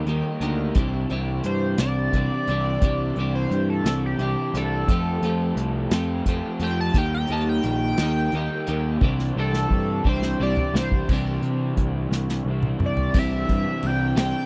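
A jangly, upbeat indie rock excerpt opens on two guitar riffs in C major: a bright, clean, compressed twelve-string electric guitar and a lo-fi, overdriven garage guitar set in the background, colored by lush chorus and tape echo. Almost at once a fuzzy, punchy picked bass and an airy acoustic drum kit join, with the kit played up front with bundle sticks, dark cymbals, a medium-tuned snare and a punchy kick. At 1.5 seconds an edgy, tearing sawtooth sync lead enters with chorus, phaser and vibrato, carrying an analog synth solo until 11.1 seconds. The slow 58 BPM pulse moves in a straight 6/8 over chords of Eb, Cadd9 and Fadd9. Drum fills mark the later passages, and the sound is dry and close, like a 1970s studio recording, with little reverb.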